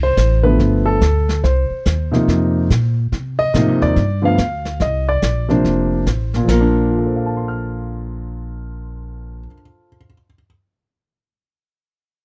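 Dry and close in the manner of a 1970s studio session, this sophisticated, relaxed swing jazz piano trio, cut from a longer piece, places an intimate, up-front grand piano with audible action noise on the melody over a woody, thumpy pizzicato upright bass. A vintage brush kit with dark cymbals and a punchy kick sits lower in the mix and stops at 6.8 seconds.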